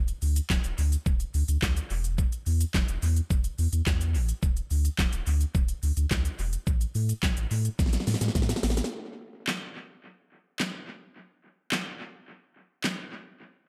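This dance-pop cut is upbeat and euphoric, opening straight into a drop at 0.0 seconds in a steady, straight four-four groove. A deep, round sine sub bass sits up front with a fast attack and sustained, mellow notes, pumping against the beat through sidechain compression. The electronic pop drum kit is layered and polished, with a knocking kick, fat snare, crisp hi-hats, handclaps and shaker, all given a tape-like color and a roomy re-recorded character, while analog delay trails off the hits. A drum fill arrives at 7.8 seconds, and after the bass stops at 8.8 seconds the drums carry on alone into the next section. The mix is dry on reverb but heavy with echo, keeping both parts close and forward.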